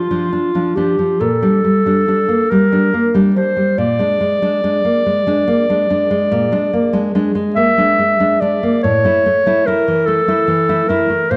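A wet recital hall reverb surrounds this short cut from a longer piece, a melancholic and solemn romantic duo for clarinet and classical guitar. The tempo is slow, around 45-50 BPM counted in dotted quarters, in 12/8 with a rubato feel that lets the phrases breathe. Up front and close-miked, the clarinet sings the melody in a clear classical style, ranging from F4 to E5 as the solo voice. Beside it, the nylon-string guitar provides a full-bodied, fingerpicked accompaniment with a deep classical tone, reaching down to A2 and up to E4. The harmony moves from D minor through Gm/Bb and Bb7, then settles onto A at 8.8 seconds, leaving the passage on an unresolved, somber note.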